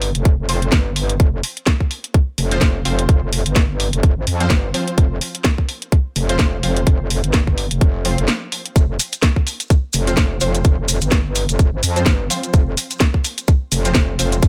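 Aggressive and bouncy, this bass house clip rides a swung sixteenth-note groove, led by a metallic, saturated FM wobble bass with chorus and overdrive, pumping up front against bold, detuned sawtooth orchestra-hit-like stabs that sound bright through their filter sweep, phaser, reverb and tape echo. A garage drum kit with a cracking snare and warm hi-hats sits up front, joined at 0.3 seconds by a tight electronic kick. After a short break at 8.3 seconds, grainy acoustic maracas enter in the background at 8.8 seconds, all in a dry, close mix.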